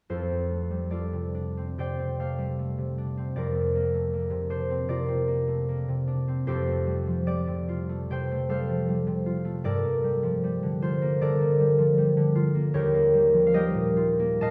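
Serene and graceful, this short passage of classical solo harp moves at a relaxed 76 BPM in 4/4, its beats uneven and rubato giving it an unhurried, breathing feel. A concert harp plays alone from 0.1 to 14.5 seconds, ranging from Eb2 up to A5, and its tone is bright and ringing, with the thumb-plucked notes sitting up front. The harmony in F mixolydian drifts through open colours, from F6 through Bbadd9/F and Fadd9 to Gm9, arriving on Eb9 at 12.7 seconds. A recital hall's lush reverb surrounds the instrument, and the listener seems placed further back in the room, so the sound blooms into the space. The passage is cut from a longer piece.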